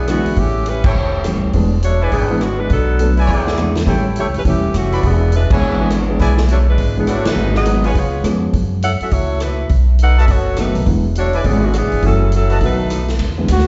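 A woody, thumpy upright bass sits up front in this brassy, energetic big-band swing excerpt, under a mellow, tight saxophone section carrying the melody and a kit with dark cymbals and a punchy kick. Clear trumpet-section stabs with light vibrato punctuate the line while a warm upright piano comps, dropping out at 8.5 seconds and returning at 10.6 seconds. A solo trumpet enters at 13.5 seconds, and the whole band sounds heard from further back on a reverberant scoring stage with a subdued top end.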